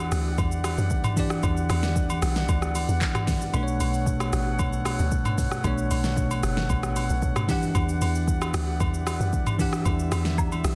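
A dense, heavily limited modern mix bathed in digital ambience carries this hypnotic, deep amapiano excerpt, where a bright, bell-like tine electric piano and a tight brass section with light vibrato and sidechain pumping move between Em9 and Bm9 over a round, percussive log drum bass and an up-front electronic R&B kit of soft kick, fat snare, metallic hats, handclaps, rim click, shaker and toms, whose kick falls silent from 3.5 to 4.1 seconds, while softly placed agogo bells and woodblock add acoustic colour.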